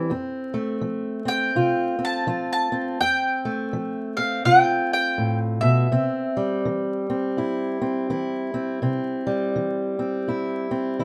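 The mandolin stands out up front, its picked double strings giving a round, warm melody that sits high between 1.3 and 6.3 seconds. Beneath it, a fingerpicked steel-string acoustic guitar with fresh strings and a boxy parlour tone carries the accompaniment through the full 11 seconds, also placed up front. This short cut from a longer piece of acoustic country blues moves at an easy 83 BPM in 4/4 with a gentle swing on the eighth notes, in C major. The harmony rests on F before moving to C at 5.9 seconds. A moderate studio reverb and a layer of vinyl crackle lend the laid-back, soulful mood an intimate, slightly aged feel.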